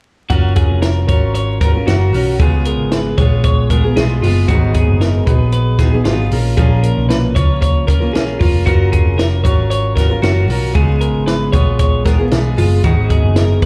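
A fingerpicked steel-string acoustic guitar with a full-bodied jumbo tone opens at 0.3 seconds alongside the rest of the band, setting a youthful, bright mood in this jangly indie pop excerpt in F# major at 115 BPM in a straight 4/4. A bright, twangy twelve-string electric guitar spins compressed arpeggios over it, carried by delay and slapback echo, while the acoustic guitar carries its own slapback echo. Underneath, a hollow-body short-scale electric bass is picked with a dark, round, amped punch, and a compact cocktail kit keeps hi-hat, kick and snare dry and natural, with a high-tuned snare and a punchy kick. The chords move from F#maj7 through C#7, G#m7 and A#m before circling back to F#maj7, C#7 and G#m7, with every part playing through to 13.7 seconds. The whole thing sounds like a small-room live gig heard through the venue's PA, wrapped in club reverb and a layer of vinyl crackle.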